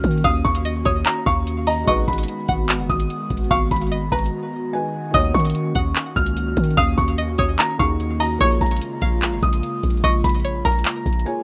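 Menacing and dark, this half-time trap excerpt at 147 BPM in Eb minor sets a felt-muted upright piano melody with audible action noise and digital delay over a boxy baby grand in the background, an airy chorused pad, a twangy string-like resonator pluck entering at 0.2 seconds with phaser and delay, a deep 808-style bass, and a booming, up-front analog drum machine of handclaps, metallic hi-hats and kick, all in a dry, rough home-demo mix that breaks briefly at 4.3 seconds as the chords move from Ebm7 through Abm7, back to Ebm7 and on to Bbm7.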